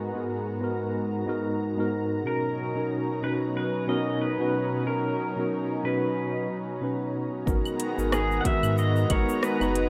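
Sunset chillout in G# minor at 92 BPM with a swung 16th feel, wistful and warm, moving from G#m7 to Bmaj7: a gritty, tremolo-laden tine electric piano through tape echo sits up front beside a thick, warbling detuned pad with chorus; a clean pedal steel guitar with slide and volume swells takes the melody at 2.3 seconds; a round sub bass, a punchy layered electronic kick and a smooth R&B kit of cabasa, claves, metallic hi-hat and rim click, its percussion low-pass filtered, arrive at 7.5 seconds, all set in moderate plate reverb within a rough home demo mix.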